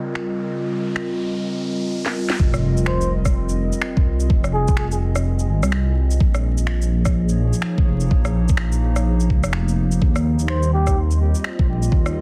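A knocking, tape-warm electronic kick sits up front in this ghostly, rainy future garage piece, cut from a longer track at 126 BPM in F minor with a swung 16th feel. It arrives at 2.4 seconds on an impact, after a riser and filter sweep build over a warbling, nostalgic pad of detuned square and triangle tones, thickened with chorus, ring modulation and grainy 12-bit sampler grit that pumps against the kick. From that same moment a deep, rumbling bass of detuned sawtooth unison layered with sine holds dark, sustained low notes, also pumping with the kick. Layered finger snaps, rim click, shaker and a cracking, softly clipped snare run through the whole piece in a studio reverb. A bucket-muted trumpet offers a veiled, breathy jazz phrase with scooped notes and tape echo from 2.9 seconds, then returns briefly near 10.5 seconds over harmony moving from Dbmaj9 through F7(no3) and Bbm7 to Ebadd9. 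The dense, heavily limited master carries vinyl crackle and a low-pass haze that adds to the lo-fi, rainy atmosphere.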